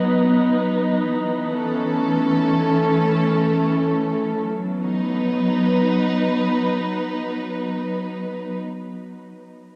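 A chamber string section opens the recording with sustained, bowed chords, smooth and up front with vibrato, moving from B to A and back to B at 4.5 seconds in this short ambient fragment at 53 BPM in 3/4. The mood is weightless and luminous, the ensemble's even, silken top ringing out into a vast cathedral reverb with a 5.2-second tail. A cassette-tape character colours the sound until the strings stop at 8.6 seconds.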